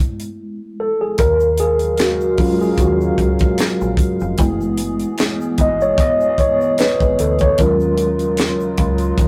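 A light 75 BPM sixteenth-note swing in 4/4 carries this late-night, sultry neo-soul R&B piece in Eb minor, where a mellow tine electric piano solos up front over Gbm11 and Ebm11 chords, pausing between 0.4 and 1.2 seconds before a hollow, chorused pad and a deep, round, foam-muted fingered bass enter, all supported by a tight, dry funk kit with a high-tuned snare, a very quiet egg shaker with finger snaps, and the warm saturation of a rough rehearsal-room recording.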